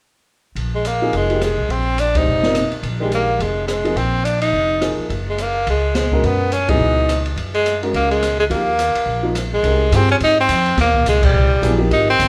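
This excerpt sounds like a band playing live together in one room, wrapped in a moderate large-studio reverb that gives the modal jazz a searching, open mood. Upright bass and drums start together at 0.6 s: the bass is plucked on gut strings, woody and thumpy, sitting up front, while the kit has dark cymbals, a medium-tuned snare, a boomy kick and a rolled-off top, using crash, ride, hi-hat and rim clicks under a swung eighth-note feel. Close behind, a bright tenor saxophone carries the solo melody up front, shaped by light vibrato and scooped notes. A warm, boxy upright piano comps beneath it through suspended and added-note harmonies. The whole band hits three accents together, and at 9.6 s the harmony settles onto a major-ninth chord as the passage moves into a new section before being cut off.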